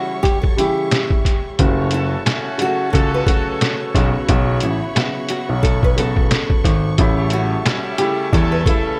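Tough and gritty, this boom-bap hip-hop excerpt moves at 89 BPM with swung sixteenths, cut from a longer piece. A brilliant, fingerpicked nylon-string guitar carries the melody over a woody, short-sustained upright piano treated with cassette-tape grit and analog delay, while a lush, bowed string section holds sustained chords with soft attack and portamento in the background. Compressed, pitched-down sampler-style drums sit up front from 0.2 seconds, with a thumpy kick, medium-tuned snare and hi-hat fed through echo. At 1.6 seconds a mellow, vintage baby grand piano enters on the bass line with long sustain, and a tight horn section with light vibrato adds clear stabs from 1.8 seconds. The chords move from C#dim through F#m and Bsus2 to A7, in a dry, echo-heavy mix with little reverb.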